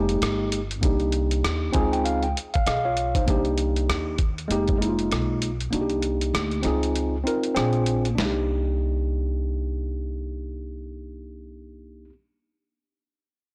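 A gritty, sampler-style boom bap drum kit with a thumpy kick, compressed feel and a snare pushed into soft clipping drives this smoky, nocturnal jazz-hop excerpt in C minor at 98 BPM, swinging its 16ths before dropping out at 8.3 seconds. A worn, slightly out-of-tune tine electric piano plays clean, direct chords such as Fm11, Cm9 and Dbmaj9, adding a fill between 1.4 and 3.3 seconds, while a woody pizzicato upright bass holds the low end. The whole mix sits in light digital ambience with a blown-out, overdriven character, and the kick falls silent from 5.7 to 8.2 seconds.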